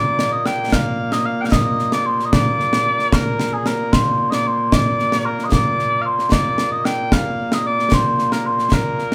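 Mellow small bagpipes open this proud, ceremonial Scottish pipe tune in Bb major, their sweet, continuous line carrying vibrato and sitting up front in a straight 6/8 at 75 beats per minute. Concert snare and bass drum join at 0.2 seconds, acoustic and close, with bright cymbals. A moderate stone-room reverb gives the live band a resonant space in this short cut from a longer piece.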